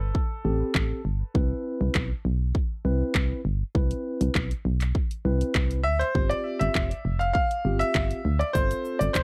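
A straight groove from a house drum kit, with a punchy, layered kick, handclaps, hi-hat and shaker, drives this confident, energetic dance-pop excerpt, anchored by a round, dark FM bass with sidechain pumping. A mellow tine electric piano with a clean, speaker-coloured tone also pumps as it supplies chords from 0.4 seconds. A clear, polished grand piano sketches a brief tape-echoed melody at the start and returns at 5.8 seconds, all in a dry, close, 1970s-style studio sound.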